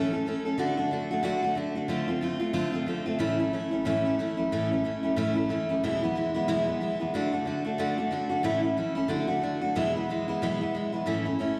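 A picked steel-string acoustic guitar carries this short rock excerpt entirely on its own, its bright dreadnought tone ringing with the snap of fresh strings and sitting up front in the sound. The mood is upbeat and rollicking, driven by a swung eighth-note feel in 4/4 that gives the playing a loose, bouncing lilt. The guitar ranges from a low E2 up to A4, moving through a progression that touches on a darker Dm7 before returning home and cadencing through E back to A at 11.1 seconds. A slapback echo clings to each picked note, adding a quick doubled edge to the attack. The performance is heard as a live gig through the venue's PA, with a moderate club reverb and a recital-hall bloom giving the guitar a roomy, in-the-moment character as the fragment, cut from a longer piece, runs to 11.6 seconds.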